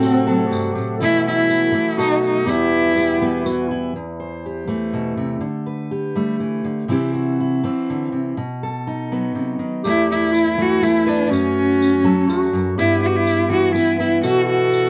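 In a straight 3/4 at 122 BPM, this reflective, wistful acoustic folk piece in E minor, cut from a longer work, rests on a dark, full-bodied fingerpicked steel-string guitar that plays throughout and carries the passage alone from 3.9 to 9.8 seconds. Before that, a bowed cello sings the melody up front with vibrato, portamento and a soft attack, bathed in plate reverb. Beside it, a distant, roomy clarinet adds a classical-style second line, a reedy, breathing harmonium holds mellow chords in the background, and a jingly tambourine sits underneath. The clarinet and tambourine return at 9.8 seconds, with the cello back just after, all within a snug, intimate booth ambience.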